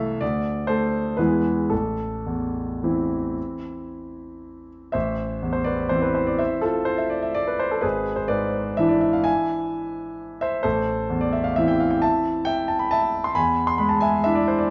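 A lone concert grand piano opens on a high D at 0.2 seconds, setting off a bittersweet, elegant classical waltz in A minor that moves in a flexible rubato between 105 and 142 BPM, its harmony turning between A minor and E. The instrument sounds brilliant and up front, with deep bass and a natural tone, while the stone room's moderate reverb and the darkened, warm production soften its top end. The opening phrase returns at 4.9 seconds and leans through E7/G# before closing on E7 at 13.4 seconds, as this short passage is cut from a longer piece.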